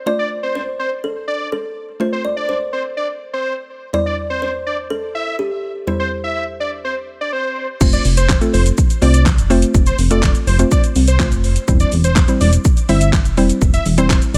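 Dry, with little reverb, this sunny dance-pop excerpt moves at 124 BPM in F major, alternating between F and C over E in a carefree, summery mood. A round, mellow mallet-like synth pluck sets up the accompaniment from the start, its chorus-thickened notes pumping against the sidechain. An airy, plucked kalimba carries the melody beside a thick, bright unison lead, a detuned sawtooth voice with vibrato and tape echo that sings on through the whole clip. The kalimba drops out at 7.5 s, and at 7.8 s the track hits its drop. A dark, glossy chorused synth bass pumps up front, and an electronic pop kit enters with a punchy kick, fat snare, metallic hi-hats, crash, handclaps and shaker.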